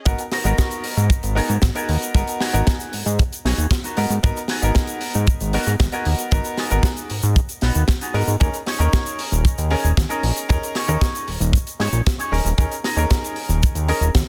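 A dense, heavily limited modern mix in studio reverb opens this sleek, cosmic slice of nu-disco, cut from a longer piece and landing straight in a drop that runs from 0.1 s to 14.3 s. Up front sits a fat, thick sawtooth analog bass with a fast attack and sustained notes, joined by a dry, polished, tight kick drum. A tight funk drum kit adds hi-hat, shaker and a high-tuned snare, its airy acoustic sound softened by low-pass filtering on the hats, snare, percussion and room. Over this, a clean, picked electric guitar with an envelope filter plays a twangy riff, touched with subtle chorus and tape echo. A brilliant, worn concert grand piano supplies intimate accompaniment with audible action noise and its own tape echo, as the harmony moves from G#m7 to D#7sus4 at 8.4 s.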